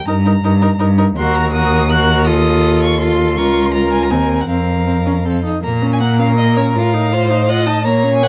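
A dark, lightly reverberant production gives this short cut from a quick classical-period string quartet movement a dramatic, restless character. It moves at 162 BPM in 3/4 in Bb minor. The cello anchors the bass up front with a smooth, rich bowed tone and vibrato, while the first violin carries the melody high above from a more distant position, its line smooth and even. The second violin adds a focused inner line, and the viola fills in the accompaniment with a smooth, even sound. The harmony passes through Eb minor and F7 colours before arriving on Bb minor at 5.6 s, where a new section begins and heads toward F7 as the passage breaks off.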